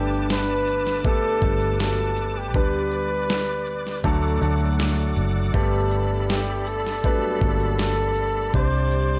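Tender and emotional, this short slice of a slow pop ballad in G major at 80 BPM sets a warm flugelhorn melody with light vibrato over a mellow French horn section in the background, a clear concert grand piano with audible action noise and long sustain, a reedy, lightly overdriven tonewheel organ holding chords through a fast rotary speaker, a round, foam-muted electric bass, and a smooth R&B drum kit with a knocking kick and deep snare entering at 0.3 seconds, all in a dark production with light small-room reverb as the chords move from Gadd9 to D and settle on Csus2.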